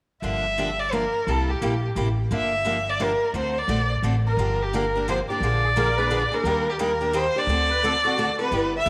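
From 0.2 s a rich, bowed violin with vibrato, portamento and a tape echo sings a bittersweet, virtuosic melody over bright, picked steel-string guitar with audible finger squeak and a thumpy, woody pizzicato upright bass on gut strings. This excerpt of acoustic jazz manouche swings in 3/4 at 174 BPM in G dorian, turning to G minor at 4.4 s, while a reedy, shimmering musette accordion adds a background second line from 5.6 s, all bathed in a wet echo-chamber reverb.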